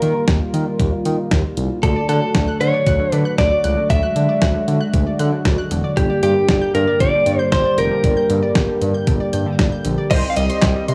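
A dry, gritty hardware recording with transformer saturation and a touch of studio ambience frames this driving, cool synth-pop excerpt in a straight 4/4, moving through Ebadd9, D, Gm and Cm. A clean, compressed electric guitar recorded direct carries the picked melody up front with tape echo, over a shimmering, detuned pulse-width pad holding sustained chords, a smooth sawtooth synth bass with vibrato and ring modulation, and a thumpy, sampler-style 8-bit drum machine with handclaps, hi-hat, snare and crash. A round, warbling analog pluck adds chorused arpeggios from 1.8 s, and a dark, phased synth brass second line enters in the background at 10.1 s.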